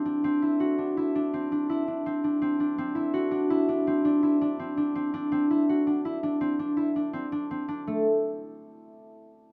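A contemporary instrumental excerpt, urgent yet pensive, moving at 166 BPM in a straight 7/4. A lone concert harp plays arpeggios on a Cadd9 chord from 0.0 to 8.0 seconds, its bright, thumb-plucked strings ringing up front within a narrow middle range. The close, detailed recording adds light reverb, and the chord drops away at 7.9 seconds as the final stretch begins.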